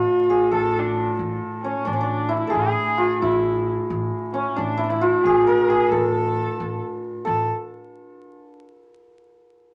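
Vinyl crackle and a dulled top sit over moderate studio reverb in this festive Persian modal ensemble excerpt in A dastgah chahargah, moving at 89 BPM in a straight 6/8. A shimmering, ringing hammered santur carries the melody up front, while a rich, focused bowed kamancheh with vibrato and portamento traces a second line. A dark, intimate sul tasto cello holds a drone on A2, and a woody, growly pizzicato upright bass thumps on A1, until the others stop by 7.5 s and the santur rings on alone to 8.6 s.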